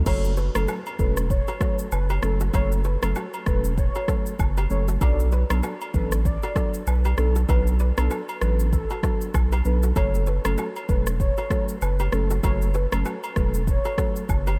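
Sultry and smooth, this afrobeats excerpt sits at 97 BPM in 4/4 with a swung sixteenth-note feel, moving from F#m to Bm7 at 5.0 seconds and back to F#m at 10.0 seconds. A saturated sub bass carries the low end, deep, thick and sustained, sitting up front alongside a deep house drum kit of layered electronic kick, rim click, shaker and crash cymbal. Over them floats a velvety synth lead, detuned in unison with chorus, delay, vibrato and portamento, while a mellow tine electric piano supplies clean, direct accompaniment through analog chorus. A fingerpicked kora plays a ringing, crisp riff with delay in the background, and agogo bells and woodblock add small-room acoustic colour with tube shaker and group handclap. Light reverb gives the mix a gentle sense of space, and the whole texture holds together from about 0.1 seconds to the cut at 14.6 seconds.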